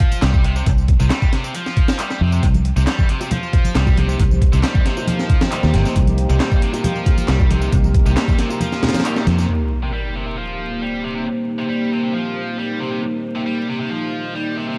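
Breakbeat at 136 BPM in C minor pentatonic, energetic and funky, where a gritty, pitched-up sampler-style drum kit with a thumpy kick and high-tuned snare drives alongside a round, foam-muted fingered bass, both up front, under a bright, double-tracked high-gain guitar riff soaked in distortion, 12-bit grit and dub echo, overdriven electronic tambourine and handclaps, background congas and bongos, and a moody detuned sawtooth pad entering at 3.5 seconds with chorus and sidechain pumping, until a band accent at 9.1 seconds and a sub drop at 9.5 seconds strip it down to guitar, pad, tambourine and handclaps in a dark, vinyl-crackled hall.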